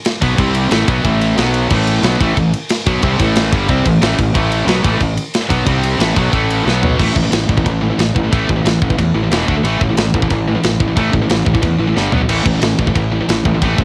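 A dark, aggressive heavy metal excerpt in A minor at 181 BPM opens with an up-front, tight metal drum kit with a medium-tuned snare and rolled-off top, quickly joined at 0.2 seconds by a bright, tight distorted guitar riff, a high-gain distorted guitar and a double-tracked, compressed fuzz guitar set in the background, and a growly, overdriven fingered bass pushed forward, all cut onto cassette tape with little reverb in a home recording. The fuzz guitar drops out at 7.0 seconds as the second section begins, and drum fills at 6.7 and 12.0 seconds punctuate a progression of power chords on A, C, B, E, D and G.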